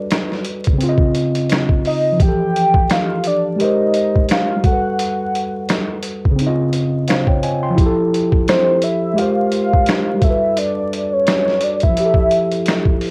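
A velvety, dark synth lead with chorus, tremolo, vibrato and plate reverb carries the melody over a worn, slightly out-of-tune tine electric piano and a gritty, pitched-down boom bap drum kit of thumpy kick, medium-tuned snare, hi-hat and finger snaps. This nostalgic, cosy lo-fi hip hop cut sits at 86 BPM with a light 16th-note swing, moving through lush major-ninth chords from Gmaj9 to Dbmaj9, Fmaj9 and Abmaj9, all heard through cassette tape, vinyl crackle and a snug booth ambience.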